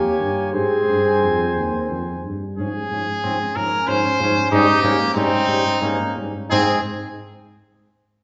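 A rubato 3/4 pulse drifting between 84 and 95 BPM carries this heroic, solemn classical brass quintet excerpt in Ab major: a clear trumpet sings the melody up front, a distant flugelhorn with light vibrato weaves a second line in the background, a brilliant, vintage-toned trombone and a warm, soft-attacked French horn fill the accompaniment, and a mellow tuba anchors the bass up front, all five sounding together from 0.0 to 6.8 seconds inside a roomy recital-hall reverb with a rounded-off high end.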